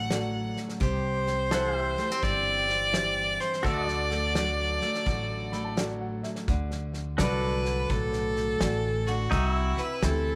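A swung 4/4 groove at 85 BPM carries this nostalgic, easygoing honky-tonk country piece in D mixolydian, where a biting, up-front fiddle leads the melody and takes a solo from 6.5 s over picked, full-bodied acoustic guitar, clean pedal steel chords with volume swells, a woody, thumpy pizzicato upright bass, a small-room drum kit with a fat snare and punchy kick, and a dark, slightly detuned upright piano in the background that steps forward with a fill at 5.1 s, all set in moderate spring reverb.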